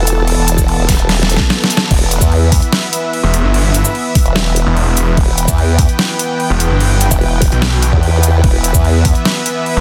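A chorused, overdriven formant-sweep wobble bass anchors this menacing, heavy half-time wobble dubstep excerpt at 147 BPM in E minor (tuned to A4 = 438 Hz), pushed up front over a lush, detuned supersaw pad that pumps with sidechain, a knocking overdriven electronic kick, and a layered dubstep kit of deep snare, bright hi-hat, shaker and crash cymbal that plays a fill from 1.1 to 1.9 seconds, with the band hitting an accent at 1.8 seconds, before a snarling, growling distorted saw bass joins at 3.2 seconds in a dense, heavily limited modern master with digital ambience.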